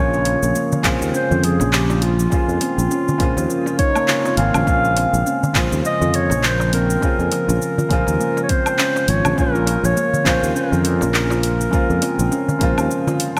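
Organic downtempo excerpt at 102 BPM in Bb minor with a swung 16th-note feel, earthy and mystical over a single Bbm9 chord, where a dark, smooth-topped clarinet sings the melody through digital delay above a soft, felt-muted upright piano with audible action noise, lush chorus and sidechain pumping, ringing handpan arpeggios in the background, and a growly, up-front fretless electric bass, while an afro-pop kit of cabasa, handclaps, woodblock and warm hi-hats, a small, dry darbuka played with soft hands, and a deep electronic kick entering at 0.8 seconds drive the groove, all set in a lush hall and a bright 1980s-style digital sheen.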